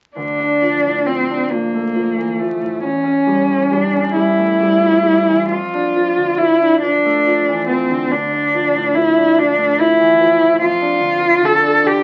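Melancholic and yearning, this short passage cut from a longer romantic classical duo unfolds in D minor at a slow 44-49 BPM in 6/8, counted in dotted quarters and shaped with a free, rubato feel. A single bowed cello carries the melody from 0.2 to 12.0 seconds, its tone rich and focused, coloured by vibrato and placed up front, moving between A3 and A4. Beneath it, a clear concert grand piano supplies the accompaniment across the same span, reaching from D2 to D4 with deep bass and a smooth, vintage character marked by short sustain, and sitting well below the cello in level. The harmony moves from Dm to A7/E, then Dm/F, back to Dm and again to Dm/F. The sound carries a wet studio reverb and the patina of a very old 78 rpm record, with vinyl crackle and a muffled top end.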